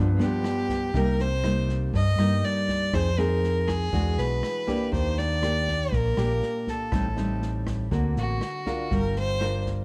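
This short excerpt from a longer bossa nova piece opens with a fingerpicked nylon-string guitar, a round hollow-body electric bass and a brief touch of worn baby grand piano, whose action noise can be heard before it drops away after 1.0 seconds. At 0.2 seconds a bowed fiddle enters up front, its focused, rich tone carrying the melody with light vibrato, played by a single player. An open jazz kit joins at the same moment, using kick, rim click and snare, with a boomy kick and a rolled-off top that keep the drums soft and low in the mix. The classical-style guitar has the warm ring of fresh strings, while the amped bass sits dark beneath the harmony as it moves from G7 through Cm7, Ebmaj7 and Am7b5 to land on Gm7. Light reverb and a dark production give the whole a smooth, intimate mood.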